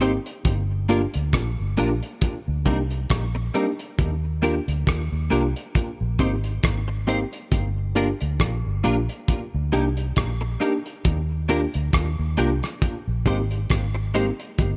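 A muffled, cloth-damped drum kit sits up front with a tight kick, rim clicks and hi-hat alongside a dark, round, foam-muted fingered bass in this tender, romantic lovers rock reggae excerpt at 68 BPM with a swung sixteenth feel. A worn, slightly out-of-tune tine electric piano, lightly overdriven and treated with tape echo, carries the accompaniment, while a clean, compressed electric guitar adds stabs through ensemble chorus and tape echo. The parts cycle through Gm7, Cm7, Ebmaj7 and Abmaj7 in a small, lightly reverberant room, with the guitar and piano stopping at 14.3 seconds as bass and drums run on to 14.8.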